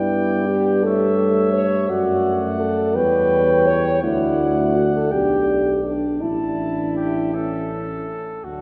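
The French horn stands out in this short cut from a longer classical brass quintet piece, carrying a soft-attacked accompaniment with light vibrato between A3 and C#5. Above it, the trumpet sings the melody with a mellow, vintage tone, while the flugelhorn adds a punchy second line and the euphonium, with its own gentle vibrato, sits in the background. The bass trombone holds the low end up front, ranging from A1 to G2. The mood is noble and warm, moving at a slow 55 BPM in 6/8 with uneven beats, tuned to A4 = 441 Hz. The harmony travels from Em7/G through A7/G, D/F# and C#dim/E to D, then G/B and Asus4, arriving on A at 7.3 seconds. A wet church reverb with a 3.0-second decay places the ensemble further back in the room, giving the flugelhorn, horn, euphonium and trombone a distant, roomy character.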